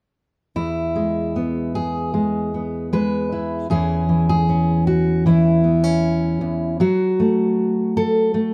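Warm and pastoral, this short folk passage, cut from a longer piece, features a lone fingerpicked steel-string acoustic guitar at an unhurried 77 BPM in a straight 4/4. The guitar is a dreadnought with a dark, full-bodied tone, sitting up front in the mix, and the occasional finger squeak adds an intimate, human touch. Rooted in E major and tuned slightly above standard pitch, the harmony moves from E at the start to C#m/E at 3.7 seconds, then to F#m at 6.8 seconds. The playing spans from a low E2 up to B4, giving the solo instrument a rich range of bass and treble within a single part. A light reverb surrounds the guitar, lending a gentle sense of space to this close, unadorned performance.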